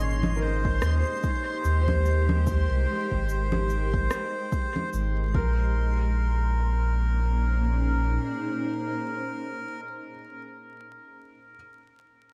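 Wrapped in light reverb, digital ambience and vinyl crackle, this spacious, deep ambient dub fragment at 73 BPM in Bb dorian sets a reedy, breathy melodica melody with dub echo over a cloudy, blurred granular pad and a round, up-front sine sub bass. Soft, felt-muted upright piano arpeggios with audible action noise sit in the background, alongside a reversed, dreamy high texture. Electronic cabasa, congas and rim click with dub echo are joined at 0.6 s by an overdriven electronic kick. The hand percussion drops out at 5.1 s and the kick at 5.5 s, while the piano lingers on until 11.6 s.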